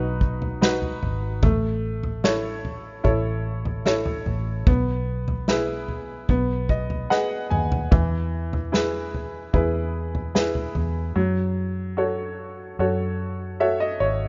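Heartfelt and tender, this pop ballad excerpt moves at an unhurried pace in a straight four-beat feel, built around a bright upright piano that sits up front with a woody, brilliant tone and short sustain. Underneath, a vintage muted electric bass played with the fingers gives a dark, round, foam-muted low end with a punchy edge. An unplugged acoustic drum kit played with bundle sticks joins at 0.2 seconds, its punchy kick, medium-tuned snare and toms sounding airy and polished in a small room, before dropping out at 10.9 seconds. The piano adds fills, including one near the close, while the drums play a short fill around 7.1 seconds. The chords drift from B through A and E/B to B6, settling on E and then F#m, all captured in a rough home-demo mix with light reverb and a dull, muted top end.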